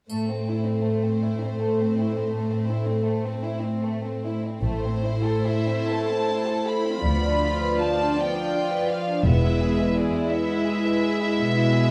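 Melancholic and solemn, this slow romantic orchestral passage in 12/8 moves with rubato through A minor, a B diminished chord over D and E. Dark, smooth-topped violins carry the melody above a warm second violin line, rich, floating violas and up-front cellos, all bowed sul tasto with close playing. The violins and cellos add light vibrato and an intimate tone, while the melody violins, violas and cellos share a soft attack. A faint triangle sounds only in the opening 1.6 seconds, and a shadowy double bass section enters at 4.6 seconds beneath the ensemble, all set in a wet stone-room reverb.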